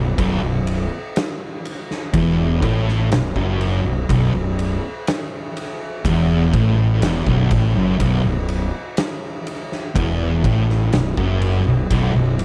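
This stoner and doom metal excerpt crawls at 61 BPM in a sludgy, ominous mood, with two thick fuzz guitars playing a low riff on a B5 chord, one warm and the other dark and set in the background. A growly, overdriven fingered electric bass sits up front beneath them, while an oversized low-tuned acoustic drum kit enters at 0.2 seconds with a punchy kick, a medium-tuned snare and dark ride cymbal in a big, pumping room. The drums sound saturated and gritty, and the overall mix is dry, with little reverb.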